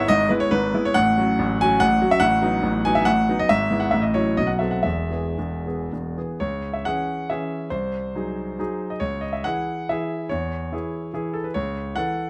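A clear, intimate concert grand piano plays alone, up front with deep bass and audible action noise under light reverb, in this rustic, proud Romantic classical dance in triple time with dotted rhythms and free rubato, moving into a C-sharp minor passage at 6.4 seconds before the 12.3-second cut from a longer piece.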